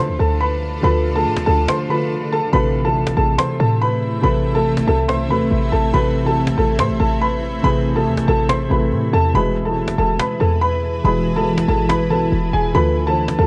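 A half-time trap groove rides on a snappy, close and dry cajon with snares and a punchy, tight 808-style bass that sits up front, with a brief break between 1.7 and 2.5 seconds in this dark, melancholic hip hop cut from a longer piece. A mellow, boxy grand piano carries the melody with audible action noise, over soft accompaniment from a thick-felt muted upright piano and a cloudy, evolving granular pad that blurs into its own reverb with a bright sheen. The whole mix sits in a light small-room reverb and is coloured by worn cassette tape with warbly pitch drift, moving through Dm, Am and E.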